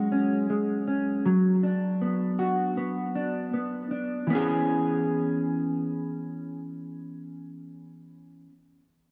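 A moderate plate reverb with a long 3.2-second tail surrounds this dark, warm dream pop recording, cut from a longer piece. A lone mellow electric guitar carries everything, its clean, fingered tone sitting up front between E3 and G#4 and colored by analog chorus and digital delay. The mood is floating and blissful, with a straight, unhurried feel in 4/4. The harmony drifts from F#sus2 to Bm/F# before shifting to E6 at 4.3 seconds, where a second passage begins. The guitar rings on alone until 8.5 seconds.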